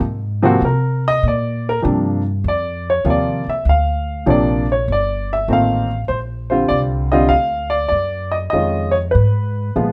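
The baby grand piano stands out, close and intimate, with its action noise audible and a short, natural sustain as it carries the melody from 0.4 seconds, ranging from Bb2 to F5. This is a relaxed, warm jazz piano trio in Bb major at 98 BPM in 4/4, with a swung eighth-note feel. The upright bass underpins it from the very start, played pizzicato on steel strings with a woody, dark, thumpy tone, sitting up front in the range G1 to C3. Through the first 6.1 seconds the piano takes a solo passage over harmony moving from Abadd9 to Bbmaj9. After that, a new section settles on Bbadd9 before turning to Fm7b5 at 8.5 seconds. Light reverb gives the trio a modest sense of space in this short cut from a longer piece.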